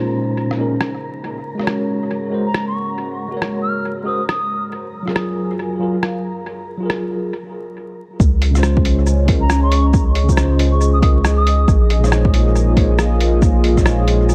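Awash in vinyl crackle and echo-chamber reverb, this rainy, nocturnal future garage excerpt at 138 BPM with a 16th-note swing pairs a gritty, low-passed tine electric piano and a dark, chorused analog pad sweeping through a filter, both pumping against the sidechain, with an airy wind-like noise texture, a muffled, pitched-down lo-fi kit of hi-hat, rim click and shaker, and a pure, vibrato-laden wooden flute with 12-bit crunch at 2.5 s and 9.4 s, until a brief break gives way at 8.2 s to a round dub sub bass and an overdriven electronic kick over chords moving from Bbm11 through Gbmaj9 to Dbmaj7.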